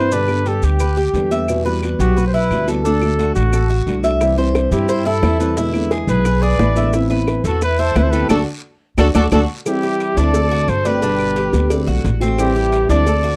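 A smooth, vibrato-laden solo trumpet sings up front over this sunny Cuban son and guajira excerpt, carried by a thumpy, dark gut-string upright bass, a small fingerpicked nylon-string guitar and the bright, metallic arpeggios of a picked tres, with raspy guiro, grainy maracas and woody claves ticking in the background. Tight, high-tuned bongos and cowbell join at 4.2 seconds, and a lush, distant bowed violin section adds a second line from 4.7 seconds. A band accent arrives at 8.3 seconds, capped by a drum fill at 9.0 seconds, all captured in a dry, close 1970s-style studio sound with light reverb.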